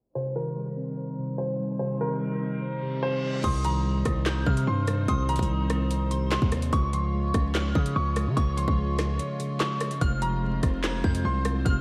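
A distorted, saturated 808-style bass dominates this tense, ominous drill excerpt, its heavy sine tone carrying a noise layer, a fast attack and a decaying tail, and it arrives with the drums at 3.4 seconds. The drill kit is electronic and up front, with a hard-clipped kick, woody snare, metallic hi-hats, handclaps, rim clicks and crash cymbal, all carrying a tape-like warmth at 146 BPM in a half-time feel. Before that, a filter sweep opens the piece over a brilliant, intimate upright piano melody with audible action noise and a slightly detuned edge, a clean, mellow tine electric piano treated with phaser, and dark, bowed sul tasto strings floating softly in the background. A reverse cymbal rises from 2.8 seconds into the drop, after which a gentle FM synth bell adds a second line high above, shimmering with chorus, phaser and a long release. The harmony in C phrygian moves from Cm to Db to Fm, with a brief break at 9.2 seconds, and the whole dreamy mix is soaked in lush hall reverb, filtered and dusted with vinyl crackle.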